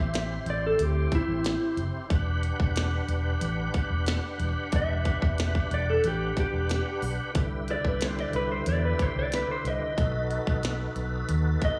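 A clean, slightly broken-up, lo-fi electric guitar solo through a small old amp opens this mournful, smoky straight-eighth soul blues in E minor at 91 BPM, joined at once by a full tonewheel organ with light overdrive, chorus vibrato and slow rotary speaker and by a dark, round, foam-muted fingered electric bass sitting up front, with a glitchy electronic drum kit of tight kick, tiny snare and clicky hats entering at 0.1 seconds, all over Am7, Em7, Cmaj7 and B7 changes in a light digital ambience.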